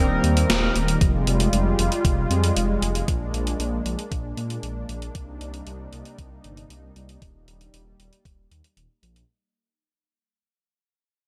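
A brief, nocturnal, driving synthwave fragment fading out from its start opens with a smooth, expressive lead note sitting in the background and retro, glossy polysynth stabs with delay, both gone within the first second, over a mellow, sidechain-pumped analog pad and a deep, rumbling, detuned saw bass up front, while a tape-toned 80s drum machine brings in hi-hat and a gated-reverb snare at 0.2 seconds and a thumpy electronic kick joins at 1.0 seconds, moving through chords of Eb, Fmadd9, Bb7 and Cm7 with a touch of light room reverb.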